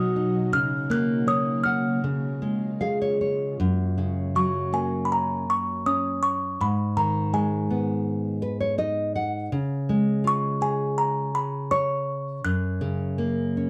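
Sleepy and tender, this short cut from a longer children's lullaby in F# major drifts at 81 BPM with a loose, rubato feel, led by a delicate, tinkling music box melody that sounds slightly out of tune and sits up front. A full-bodied, fingerpicked nylon-string guitar carries the accompaniment throughout, adding fills at 2.4 and 8.1 seconds, while an ethereal pad with chorus, tremolo and built-in reverb holds sustained chords only until 3.6 seconds. The production is dark and warm, set in a small room with moderate reverb, as the harmony moves from B through C# and G#m before settling back on F#.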